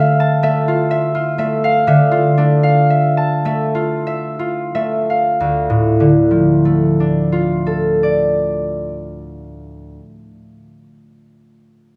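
A concert harp, warm and ringing up front, plays alone in this mysterious, gentle classical excerpt in D minor, its fingerpicked notes spanning D2 to A5 in a rubato 6/8 at roughly 28-44 BPM, slowing down through the opening 5.4 seconds from a Dmadd9 chord before settling on D minor, all bathed in a wet recital hall reverb.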